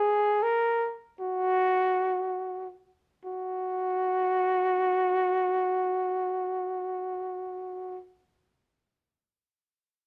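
A lone trumpet opens this short pop excerpt, playing a sunny, carefree melody in F# major in free time. Its tone is breathy and whispered, with a soft attack, vibrato and scooped notes that give the line an intimate, unhurried character. The melody stays within a narrow span from F#4 to A#4, and its upper notes keep a smooth top. The phrase shifts into a second section at 3.2 seconds, and the trumpet carries on alone and up front until about 8.0 seconds. A moderate studio reverb surrounds the horn, and the overall production leans dark and warm.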